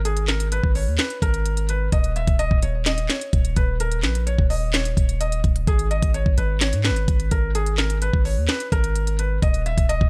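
A deep, sine-like 808 bass opens this menacing, eerie trap cut at 0.0 seconds, its long decaying notes sitting up front in G# minor at 128 BPM with a half-time feel over a G#m to D#5 progression. From 0.1 seconds a knocking kick, sharp snare, crisp hi-hats and handclaps arrive with a gritty vintage 12-bit sampler texture, joined by a soft, intimate felt-muted upright piano melody with audible action noise, shaped by a low-pass filter and trailed by delay. Digital ambience surrounds the mix, and the passage shifts into a second section at 5.7 seconds as the same chords return.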